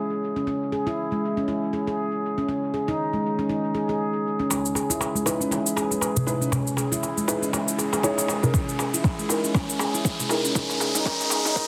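Warm and earthy, this afro house excerpt at 119 BPM in C# dorian opens with a ringing, meditative handpan playing arpeggios alone, then from 4.5 seconds builds up as overdriven electronic toms and cabasa, a clay-shelled darbuka and a very quiet round analog bass join amid filter sweeps and a drum fill. A soft, muted felt-muted upright piano follows at 5.3 seconds playing stabs with dub echo, and an electronic riser enters at 7.1 seconds, before a deep electronic kick drum lands up front at 8.5 seconds under a dense, heavily limited master.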